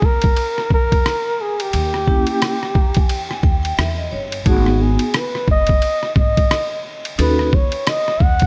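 Mellow and nocturnal, this jazz-hop excerpt sets a breathy, whispered flugelhorn up front, its smooth top carrying scooped notes and vibrato over a pizzicato upright bass with a woody, growly voice. A lo-fi sampler-style drum kit also sits up front, muffled and pitched down, with a thumpy kick, hi-hat, ride cymbal and rim click, compressed and overdriven. A metallic, ringing vibraphone with fast motor vibrato enters at 2.1 seconds and plays a fill from 2.4 to 4.5 seconds, all within a dark, warm production with light reverb and a swung sixteenth-note feel.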